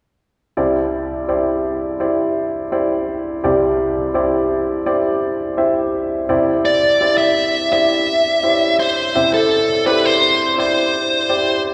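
In a straight 84 BPM 4/4 pulse, this brief anthemic pop fragment in C major opens at 0.6 s with a woody, polished upright piano spread across the low and middle range on a Cadd9 chord, before a dark, smooth overdriven electric lead guitar takes the picked melody up front at 6.7 s, both parts blooming in the long, wet reverb of a church.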